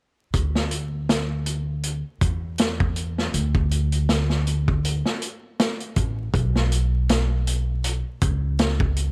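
Set at 80 BPM in 4/4 with a gentle swing on the sixteenths, this dark, cinematic trip hop excerpt rides a slow groove from 0.3 to 9.1 seconds. A vintage drum kit of hi-hat, kick and snare sits up front, its acoustic studio-room sound saturated and gritty, with a tight kick, a medium-tuned snare, a mid-forward tone and a rolled-off top. An upright bass plays pizzicato alongside it for the same span, woody and dark on steel strings, moving between A1 and E2 and also placed up front. The sound is dry, with little reverb, and a layer of vinyl crackle gives the recording a worn, dusty surface. The two parts hold one section throughout, a short cut from a longer piece that keeps its brooding atmosphere steady.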